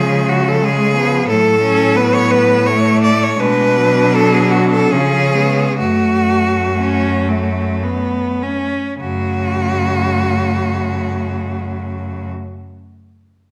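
Classical and lyrical, this excerpt for a cello ensemble in F# minor moves in a rubato 3/4 at 50-90 BPM, yearning and solemn in mood, easing into a slowdown from 2.3 to 9.0 seconds before a new section begins. A clear, focused, close bowed cello with vibrato sings the melody up front, supported by a second cello line beneath it and a smooth, even accompanying cello, while a rich, bowed bass cello with a smooth top anchors the harmony, also up front. The four players sound together throughout, set in a moderate recital hall reverb as the chords pass from C# through F#m/A, Bm and C#7 to a return on F#m.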